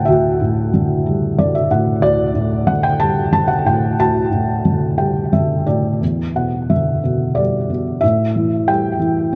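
A cassette-tape grain and a moderate spring reverb wrap this short piece of lyrical classical solo piano, cut from a longer work, in a bittersweet, cool atmosphere. A felt-muted upright piano plays alone throughout, its tone soft, mellow and dark, with thick felt, short sustain and audible action noise keeping it intimate and up front, touched by tape echo. The rubato feel drifts around 91 BPM in 3/4, ranging from D2 up to A5. It opens on a Dsus4 harmony with two brief felt piano fills, then settles into E minor at 6.0 seconds on an Em7 chord. An A7 chord that omits the third arrives at 8.0 seconds, and the passage ends at 9.4 seconds.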